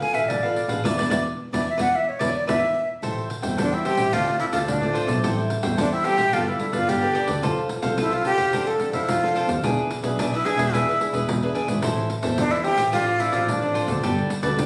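A straight 4/4 samba and choro groove carries this joyful, festive fragment: a jingly, dry pandeiro played with soft hands, a crisp picked cavaquinho, a fingerpicked classical nylon-string guitar and a close, intimate bowed double bass with an airy, sul tasto tone and light vibrato. Up front, a breathy metal flute sings an expressive melody with vibrato and lifted highs, while the band hits a shared accent from 0.8 to 3.0 seconds before a new section opens at 3.0 seconds. The sound is that of a phone recording in a small room with a moderate reverb.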